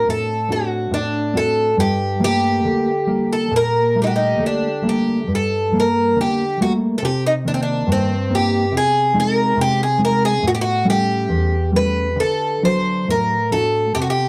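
Longing and mournful, this short cut from a fado-style ballad moves in a loose, rubato 2/4. A bright, shimmering twelve-string acoustic guitar carries the melody up front, its picked, octave-doubled lines catching a little finger squeak and a boxy parlour tone, while a dark, full-bodied nylon-string guitar supplies thumb-plucked accompaniment with a deep classical weight. Both play throughout in a modest small-room reverb, the harmony drifting from a D7 through Cm7 and A7 before settling on D at 12.2 seconds.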